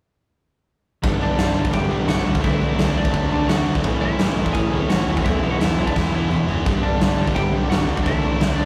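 Punk rock at 171 BPM in a straight 4/4, this short cut from a longer piece feels rebellious and rowdy, kicking in at 1.0 s with guitars, bass and drums together. A big acoustic rock kit sits up front with a tight kick, medium-tuned snare and toms ringing in a bright stone room, and it throws in a fill from 6.0 to 6.7 s. Behind it, two overdriven riff guitars churn away, one a bright cranked stack and the other a crunchier, warmer-toned part, while a dark, foam-muted vintage bass thumps low and round beneath them. A twangy, compressed lead guitar with a slightly broken-up edge joins at 1.2 s to carry the melody over the cycling G, D, A, E progression. The rough rehearsal-room sound, with light reverb and warm saturation, gives the whole take a raw, live-in-the-room bite.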